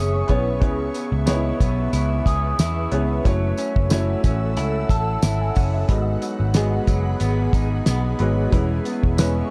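Indie bedroom pop in C# minor at 91 BPM with a light sixteenth-note swing, wistful and hazy, moving through E6, C#m7, F#m7 and G#m7 chords in a short cut from a longer piece. A cloth-damped, thuddy drum kit with a fat snare and tight kick sits beside a round, foam-muted picked bass up front, while a slightly broken-up, lo-fi electric guitar with subtle chorus and vibrato and a woody, slightly detuned upright piano with audible action noise and cassette-tape colour fill the accompaniment. An ethereal, airy pad holds sustained chords, a mellow soft-mallet vibraphone with analog chorus and delay rings briefly in the background until 0.8 seconds, and a jingly tambourine enters at 0.9 seconds, all within a dark production and small-room reverb.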